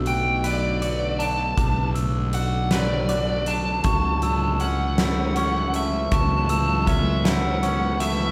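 A wet, roomy live-band sound frames this soaring, cinematic post-rock fragment in 6/8: a smooth overdriven lead guitar carries the melody up front over a round fuzz bass and a huge arena drum kit with a fat snare and punchy kick, while a ringing, bell-like glockenspiel and a clean, twangy electric guitar spin arpeggios and a deep, moody ambient pad with chorus holds sustained chords underneath, moving from Bm7 to F#m7/C#.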